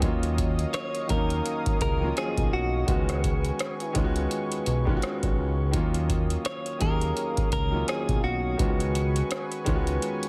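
A bright, twangy clean electric guitar carries the melody through a delay, entering at 0.7 seconds and stopping at 9.6 seconds. This sensual, longing excerpt of contemporary R&B moves at 84 BPM in Eb minor, with a swung sixteenth-note feel. Beneath the guitar, a booming analog drum machine sits up front, with a deep kick, metallic hi-hats and a rim click that carry the sound of a large room. A fat, sawtooth-edged analog bass holds the low end until 10.0 seconds. A clear, vintage grand piano plays the accompaniment, while a detuned analog pad with a soft attack and chorus sustains high chords. The harmony alternates between Ebm9 and Db7sus4, and the mix is dry, with a heavily compressed radio sound.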